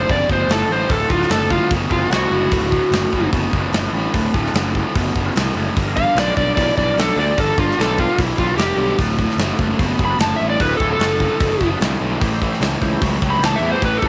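A gritty, swaggering blues rock and southern rock excerpt at 149 BPM in D mixolydian opens with an overdriven slide guitar melody up front, a double-tracked, picked electric guitar riff, a growly fuzz bass and a very quiet, thick tonewheel organ holding chords through a slow rotary speaker, as a big acoustic drum kit with a punchy kick and a medium-tuned snare enters at once. The slide guitar pauses at 3.3 seconds and returns at 6.0 over chords moving from D7#9 to G7#9, back to D7#9 and on to A7#9. A brief, key-clicking organ fill arrives at 11.4 seconds, all set in light reverb and studio ambience.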